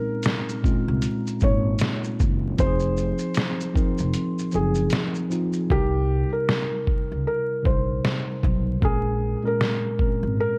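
Melancholic and hazy, this lo-fi hip hop excerpt drifts at 77 BPM with a swung 4/4 feel, as a soft, felt-muted upright piano carries the melody over a worn, slightly out-of-tune tine electric piano with a cassette-tape character, moving through Bbm11, Fm7, Cm7 and Bbm7. A muffled, pitched-down sampler-style drum kit with a thumpy kick, medium-tuned snare, hi-hat and shaker sits up front alongside a woody, growly pizzicato upright bass that joins at 0.9 seconds. The kick drops out from 4.1 to 5.7 seconds and the hi-hats fall away from 5.7 seconds on, all wrapped in light reverb and vinyl crackle.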